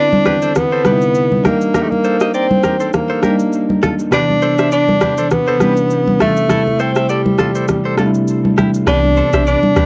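This home cassette recording carries a light reverb and a digital ambience, giving a homespun glow to a sunny, joyful afrobeats groove at 101 BPM in C major, cut from a longer piece. A breathy tenor saxophone takes the melody up front in a jazz-style solo, with vibrato and scooped notes, its tone colored by cassette tape. A bell-like tine electric piano supplies clean accompaniment over chords moving from Cmaj9 to Ebmaj7, returning to Cmaj9, then Am7. Meanwhile, a twangy, compressed clean electric guitar picks a bright riff treated with tremolo and tape echo. Congas played with soft hands on a thin skin join an electronic shaker and rim click, also tinted by cassette, to keep a 16th-note swing through this break. At 8.9 s, a deep, punchy sine sub bass arrives with a pitch-drop attack as the harmony settles on Cmaj9.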